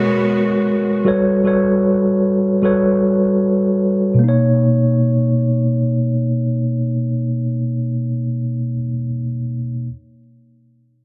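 A dense, heavily limited modern master with light reverb and digital ambience frames this dreamy, romantic R&B excerpt in free time and B major. A mellow, clean tine electric piano sits up front through its built-in speakers, carrying the accompaniment across the full 9.9 seconds over lush jazz harmonies of G#m9 and Gmaj9#11 before settling on Bmaj9 at 4.2 seconds. A rich, close studio string section adds bowed, vibrato-tinged sustained chords softly beneath it, dropping out after the first second.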